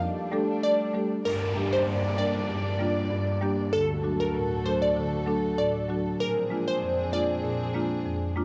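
Dancehall with a bouncy, hypnotic feel, cut from a longer piece, built on a close, intimate string section holding soft-attack chords under a woody, dark marimba accompaniment that enters at 0.3 seconds. A glassy, crystalline wavetable pluck carries the melody with chorus and a filter sweep from 0.6 to 7.2 seconds, while an electronic downlifter runs through the middle from 1.3 seconds. The strings, marimba and pluck all carry a cassette-tape coloring, set in a moderate studio reverb with a homemade character, as the harmony moves from Dsus4 through G minor and D to Bb7.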